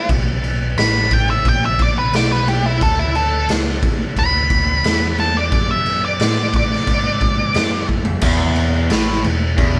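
Recorded live in one room with light reverb, this gritty, raunchy blues rock and southern rock power-trio piece at 88 BPM opens on a dark, fuzzy octave-fuzz lead guitar solo over a round, overdriven picked electric bass and a punchy, saturated raw garage drum kit, moving to a D chord at 2.8 seconds, before a drum fill at 7.9 seconds leads into a bright, double-tracked cranked stack guitar riff on E5 at 8.2 seconds.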